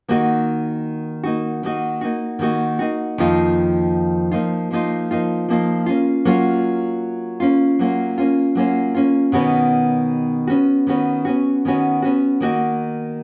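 Reflective and wistful, this short pop fragment features a solo nylon-string guitar, fingerpicked in a bright, classical style at 78 BPM in Eb minor, moving through Ebm, Bbsus4/F, Gbmaj7 and Badd9 before settling back on Ebm at 12.4 seconds. The guitar sits up front, played live in a reverberant stone room whose one-second reverb decay gives the acoustic tone a sense of space.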